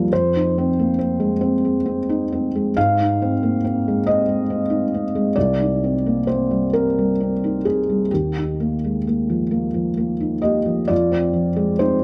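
A felt-muted upright piano carries this short, wistful fragment of neoclassical minimalism alone, its thick felt giving the notes a soft, dark, mellow voice. The playing moves in 6/8 with a free, rubato feel, spanning from C2 up to F5 and lingering in a melancholic mood. Chords drift from Fm7 through Ab, Cm7 and Ebadd9 before settling on Fm at 10.9 seconds, where a brief new passage begins. The piano sits up front in a dry, close room that recalls a 1970s studio, so the audible action noise of the instrument becomes part of its intimate character. Cut from a longer piece, the clip ends at 12.0 seconds.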